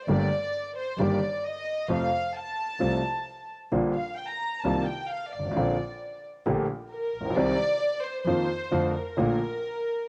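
A rubato tango in four, this sultry, tense fragment of a longer piece features a dark, floating studio violin section bowing sul tasto up front as the featured voice from 0.0 to 10.1 seconds, while a smooth, vintage grand piano with short sustain accompanies up front and an earthy, biting bowed double bass with light vibrato sits in the background, the violins and piano carrying a cassette tape coloring in a home recording with light reverb and small room ambience, the chords moving from Gmadd9 through Eb/G, F and Cm before settling on Bbmaj7.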